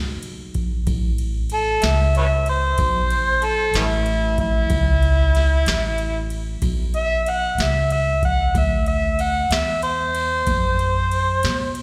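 Slow blues in a swaggering, rollicking 12/8 at 62 BPM, tuned to A4 = 435 Hz, cut from a longer piece and heard as a live gig through the venue's PA in a recital hall. A woody, thumpy pizzicato upright bass on gut strings sits up front from the start. It is joined at 0.2 s by a booming analog drum machine with a deep kick, crisp snare and ride cymbal, re-recorded in a small room. From 1.5 s a gritty, overdriven amplified harmonica takes a jazz-style solo over Aadd9 moving to D9, full of scooped notes, tongue slaps and light vibrato, with slapback echo and digital delay.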